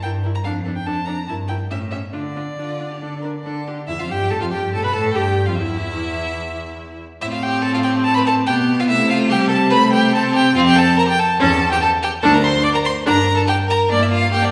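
A recital hall's wet reverb surrounds this restless, dramatic classical-period string quartet, cut from a longer quick movement at 143 BPM in 4/4 that opens in D minor and turns to A minor at 3.9 s. Up front, the first violin carries the melody with a warm, expressive tone, vibrato and portamento, while the second violin adds a rich, focused second line and the viola plays an intense, vibrato-laden accompaniment. Also up front, the cello anchors the bass with a smooth, even sound and light vibrato, all four bowed players sounding together from start to finish.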